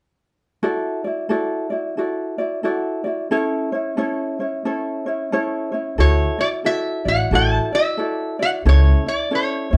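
Hawaiian music at a relaxed, languid 90 BPM in 4/4 with a gentle swing, in D major and tuned slightly below standard pitch, heard from further back in a studio with a short, wet reverb in this cut from a longer piece. A light, thumb-plucked ukulele opens alone at 0.6 seconds, moving between Dadd9 and A/C#. At 6.0 seconds a metallic, nasal lap resonator guitar enters with a slide melody played with fingerpicks, joined by a woody pizzicato upright bass on steel strings.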